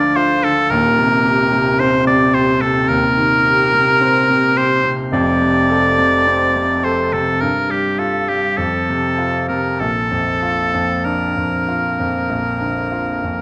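In a slow, rubato 4/4 at 48 to 56 BPM, this lyrical, warm romantic classical duo in Bb major, cut from a longer piece, sets a bright oboe with light vibrato carrying the solo melody up front over a brilliant, smooth grand piano with a vintage character and long sustain, whose accompaniment moves from Bb/D through Cm/Eb, F, Gm9 and F again to settle on Bb at 9.8 seconds, all within a reverberant recital hall.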